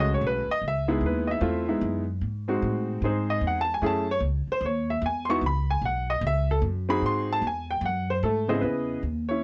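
A smooth, vintage-toned grand piano with short sustain carries the melody up front, soloing from 0.0 to 8.6 seconds in this smoky, swinging jazz fragment cut from a longer piece. A woody, plucked upright bass with steel strings sits just as close in the mix, holding down the low end. The dry, intimate 1970s-style studio sound adds to the moody minor-key swing as the chords move through shifting seventh and suspended shapes.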